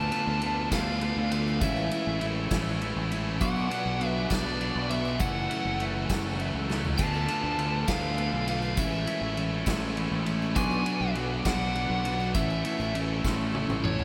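Indie rock in a jangly, wistful 6/8 at 67 BPM in A major, where a biting overdriven lead guitar sings its melody through tape echo over a twangy clean guitar riff shimmering with lush chorus, a scooped, high-gain distorted riff guitar, a growling fingered bass, a buzzy vintage combo organ holding background chords, a distant, roomy drum kit with dark cymbals that rolls through fills at 6.7 and 13.2 seconds, and a jingly tambourine, all soaked in a dreamy hall reverb.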